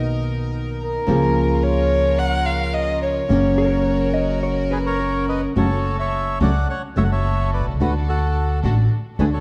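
Tense and dramatic, this rubato tango fragment opens on fingerpicked classical nylon-string guitar, soft-attack, floating bowed string stabs and an up-front, woody pizzicato upright bass, all set in a dark production with moderate scoring-stage reverb. An expressive bowed violin with vibrato and portamento carries a solo line from 0.8 s, briefly joined by a clean, compressed hollow-body jazz guitar in the background. A reedy, smooth bandoneon takes over the melody at 4.7 s.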